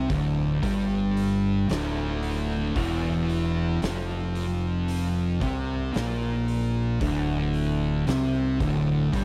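A pair of thick fuzz guitars carries this brooding, ominous stoner and doom metal riff, one of them sitting up front and the other just behind it, both picked and distorted in D minor over a single Dm chord. The tempo crawls at 56 BPM in straight 4/4, and the guitars stretch from D2 up to C4. Beneath them, a growling fingered electric bass plays up front, overdriven, bright and punchy, digging down to D1. An oversized, low-tuned acoustic drum kit enters at 0.1 seconds with a boomy kick, a fat snare and hi-hat, its big, pumping room sound saturated and gritty. The overall mix stays dry with little reverb, and this 9.2-second passage is cut from a longer piece.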